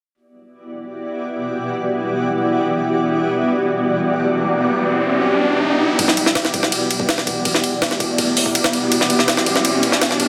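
A straight 4/4 pulse at 164 BPM drives this dark, frenetic drum and bass and jungle fragment: an electronic riser sits in the background from 3.8 seconds, then at 6.0 seconds an up-front, sampler-style jungle kit of thumpy kick, medium-tuned snare, hi-hat and ride arrives pitched up, gritty, compressed and tape-warm, with high-pass filtering on every drum, as the build-up unfolds in a wet echo-chamber reverb under a dense, heavily limited modern master.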